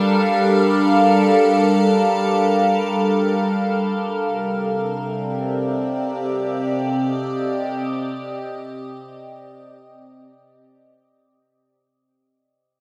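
An evolving wavetable pad fills this serene, spacious ambient excerpt. Its bright, up-front sustained chords, treated with chorus, phaser and its own reverb, move from Gm7 to Cmadd9 at 4.2 seconds, while a very quiet, glassy glass harmonica lingers on a single high G as a dark, ethereal texture. The dreamy mix is soaked in a long cathedral reverb and fades out from 1.5 to 12.0 seconds.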